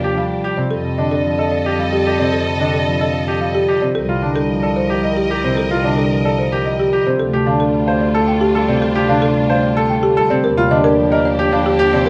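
Hypnotic and meditative, this minimalist classical pattern piece in a straight 3/4 sets a woody, rustic marimba melody over ringing thumb-plucked harp accompaniment, brilliant piano arpeggios, lush bowed violin chords with vibrato and a soft attack, and a present, warm bass clarinet line, all captured close and detailed in light reverb as the harmony drifts from Ebmaj9 through F13, Cm11 and Dm7 back to Ebmaj9.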